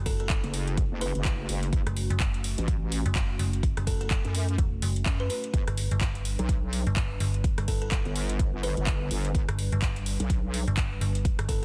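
Aggressive, swaggering bass house at 126 BPM in F# phrygian, with a swung 16th feel, where a punchy, up-front electronic kick and a garage kit of handclaps, metallic hats, rim clicks and a softly clipped snare drive under a heavy, detuned wobble bass (entering at 0.4 s with chorus and overdrive), a metallic FM bass, a buzzing, woody kalimba melody and a moody, wave-folded analog pad pumping in the background as the chords move from F#m to G at 5.5 s in this dense, heavily limited excerpt.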